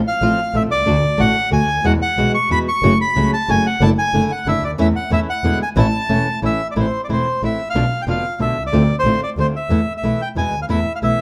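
A reedy, up-front bandoneon with a boxy small-room tone carries the melody of this sultry, passionate tango in 3/4 at 183 BPM with a rubato feel, over warm fingerpicked flamenco guitar accompaniment and a single bowed double bass that sounds clear, biting and earthy with light vibrato, captured by close, detailed microphones in a wet large-studio reverb as the music shifts from A major into A minor at 6.8 s.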